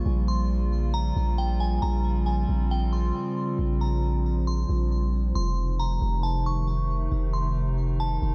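Blissful and dreamy, this short atmospheric cloud-rap excerpt at 136 BPM in a half-time feel floats a glassy, crystalline synth bell melody with chorus, phaser and delay over a warbling, nostalgic tape-like pad of detuned sustained chords and a deep, long 808-style bass, moving from Bbm6 to F7 at 5.4 seconds in a dark digital ambience.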